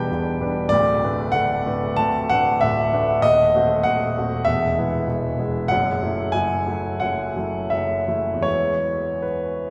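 Passionate and lyrical, this brief excerpt from a romantic classical character piece for solo concert grand piano moves with rubato freedom between 73 and 100 BPM in 4/4, its warm, intimate, up-front tone reaching from deep bass into the upper register with long sustain and audible action noise, all bathed in the lingering wash of a cathedral-like reverb as the harmony passes from Em7 through D#dim7 to a resting E.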